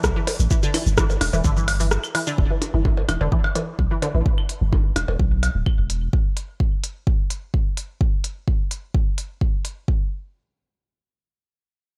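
Minimal techno with a clinical, sparse mood and a straight drive, this short cut from a longer piece opens on a drop where the deep, up-front electronic kick briefly falls out between 1.9 and 2.4 seconds before returning. Underneath, a punchy sine sub bass with a pitch-drop attack pulses in the low register with sidechain pumping, sounding only until 6.1 seconds. A squelchy, resonant filter pluck built from pulse and sawtooth waves flickers in a narrow band, its bright, evolving tone shaped by phaser, ensemble chorus, pumping and dub echo. A minimal click kit of clicky hi-hats, rim clicks and shaker sits low in the mix, joined by electronic blips and claves trailing tape echo. The dry, close sound leaves little reverb around the parts, and the harmony stays on E minor until the final stretch drops away from any chord.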